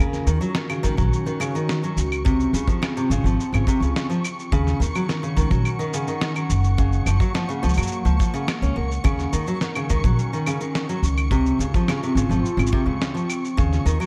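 A woody, thumpy pizzicato upright bass sits up front in this intimate, delicate folktronica excerpt, joined by a picked steel-string acoustic guitar with finger squeak and digital delay playing arpeggios, a warbling, nostalgic pad with chorus and reverb holding sustained chords, a muffled, pitched-down sampler-style kit of cabasa, claves, hi-hat and fat snare, a flickering grainy texture high above, and a dry, tight kick that enters at 0.8 seconds, all within a dark production.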